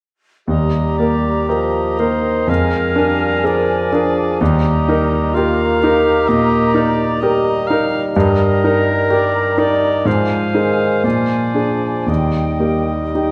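Passionate and lush, this romantic classical passage for piano and orchestra is cut from a longer piece and moves with an elastic, rubato pulse in four. A clear concert grand piano carries the melody up front, its deep bass and short sustain giving each phrase a natural presence. Around it, a present clarinet and a warm cor anglais each play a solo second line. An airy small flute group sits in the background with vibrato, crisp attacks and rolled-off highs. A dark bassoon supplies the accompaniment, and it shares a light vibrato with the cor anglais. Every part plays together from 0.5 to 13.3 seconds inside a wet concert hall reverb, and the harmony moves through a Bb9 before settling home on Eb at 12.1 seconds.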